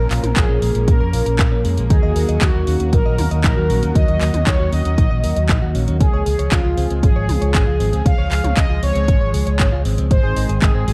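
Lightly reverberant and darkly produced, this nostalgic, melodramatic italo disco clip moves at 117 BPM over Bbm, Ebm, Db and Ab, with a very quiet downlifter ending by 1.9 s. A fat, wave-folded analog synth brass carries the melody with chorus, tape echo and vibrato, above a smooth, detuned sawtooth pad holding sustained chords and a clean, direct-recorded electric guitar picking compressed arpeggios with tape echo in the background. Up front, a fingered electric bass with an envelope filter drives the low end, while an overdriven house drum kit with bright hi-hats, handclaps and toms joins at 0.1 s, and a punchy, overdriven electronic kick enters at 0.4 s.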